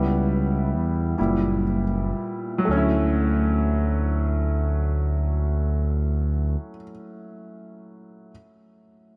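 Slow six-eight R&B with a tender, warm mood, cut from a longer piece, where a clear, intimate baby grand piano with audible action noise carries the chords from C#m7b5 through F#7b9 to Dmaj9 as the opening slows down, over a smooth, mellow synth bass sitting up front until 6.6 seconds, all soaked in a dreamy cathedral reverb while the piano rings on to 8.3 seconds.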